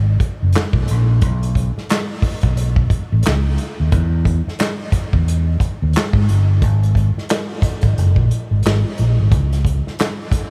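Close and lightly reverberant in a small room, this sultry, late-night R&B and neo-soul excerpt sways at 89 BPM in 4/4 with a swung 16th-note feel. A punchy, amped fingered electric bass sits low and up front from the start, while an acoustic drum kit played with bundle sticks joins at 0.2 seconds, bringing a tight kick, medium-tuned snare, hi-hat and handclaps.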